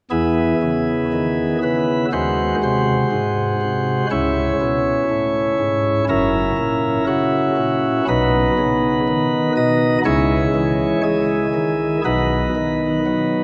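A solo chamber organ carries this reverent, majestic classical chorale with light, sparkling flute stops, their bright chiff up front as the phrases move with a rubato feel through a long, wet church reverb in a passage cut from a longer piece.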